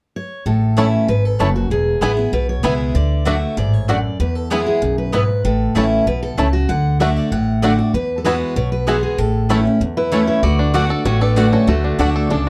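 Driving along at a brisk, straight four-beat pulse, this joyful, rustic bluegrass excerpt is cut from a longer piece and moves through a bright, major-key progression. A picked steel-string acoustic guitar carries the melody from the opening moment, its fresh strings giving off a crisp, full-bodied ring with audible finger squeak, while a second dreadnought guitar sits up front with a sparkling accompaniment. Underneath, a woody pizzicato upright bass anchors the low end, dark and prominent in the mix. A twangy, percussive banjo played with fingerpicks adds its own melodic line from the background, and a mandolin's double-string stabs pepper the texture. At 10.0 seconds a lap resonator guitar joins with a metallic, nasal slide line just before the tune shifts into a new section, all set in a small, snug room with a dark, warm production.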